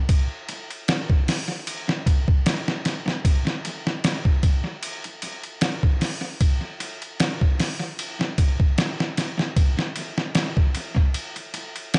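Dark and hypnotic, this trip hop excerpt with a light 16th-note swing features only a sampler-style drum kit, compressed, pitched down and muffled, with a thumpy kick, medium-tuned snare, hi-hat and ride cymbal sitting up front through small room ambience and tape echo in an echo-heavy, lightly reverberant mix with its top end rolled off.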